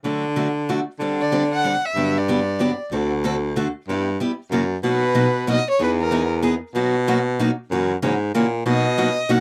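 Playful and swinging, this short excerpt of acoustic string swing moves at 188 BPM in 3/4, its picked steel-string parlour guitar sounding boxy and fresh-stringed with audible finger squeak as it carries the accompaniment. A bright baritone saxophone holds down the bass line up front with vibrato and scooped notes, while a bowed violin plays the melody in short phrases at 1.2, 4.9 and 8.7 seconds, its soft attack, portamento and expressive vibrato giving it a warm voice. The harmony settles into B major at 4.8 seconds, and the dry, close 1970s-style studio sound carries only light reverb.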